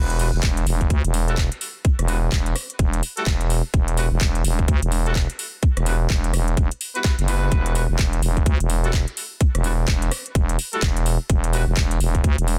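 A growling, thick FM bass sits up front from the start, its fast attack and sustained tone coloured by tube saturation and pumping against the sidechain in this bouncy, swaggering bass house excerpt cut from a longer piece. A tight electronic kick, layered and produced, drives the 4/4 groove alongside a house drum kit of handclaps, metallic hi-hats and rim clicks, overdriven and re-recorded in a large room, with a 16th-note swing giving the beat its strut. A bright horn section plays tight stabs with light vibrato, a smooth top and octave doubling, its pop-style phrases carrying delay and sidechain pumping until 11.6 seconds. The harmony rests on an Emadd9 chord throughout the single section. Digital ambience and a dense, heavily limited modern master keep the sound loud.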